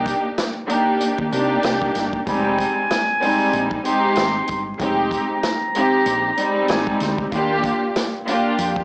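Boom-bap hip-hop at 95 BPM in F dorian with a tough, gritty mood, this excerpt pairs a lush, bowed string section up front with a dark, round fretless bass and a vintage kit of punchy kick, medium-tuned snare, rim click and hi-hat, while a nasal, breathy trumpet with straight mute enters at 2.3 seconds with scooped notes and analog delay, all wrapped in dry, gritty hardware saturation, vinyl crackle and small-speaker sound.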